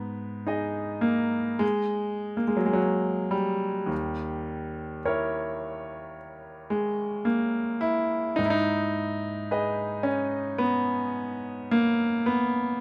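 Tender and dreamy, this brief fragment of a romantic classical nocturne unfolds in a slow, rubato 4/4 for solo grand piano. The piano sounds clear, natural and up front, moving from a minor chord at 0.0 seconds through a tense dominant harmony at 3.9 seconds and settling home again at 8.4 seconds. Close, detailed miking and little reverb give the instrument an intimate, dry presence.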